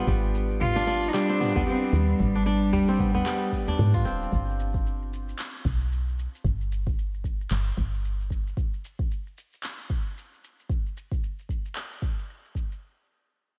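Earthy organic downtempo at 113 BPM in G phrygian dominant with a swung 16th feel, this fragment of a longer piece opens with a floating, bowed sul tasto cello melody and bright, ringing fingerpicked kora arpeggios, both bathed in diffuse ambient delay, over a woody, round FM bass with sidechain pumping, a deep, tape-warm electronic kick, an overdriven deep house kit of handclaps, shaker and toms with low-pass filtering on its percussion, toms and snare, and a distant udu in a small room; the harmony moves from a rootless Fmadd9/Ab to a bare G5 at 4.3 s after the cello stops at 3.8 s, and the drums carry on to 12.8 s.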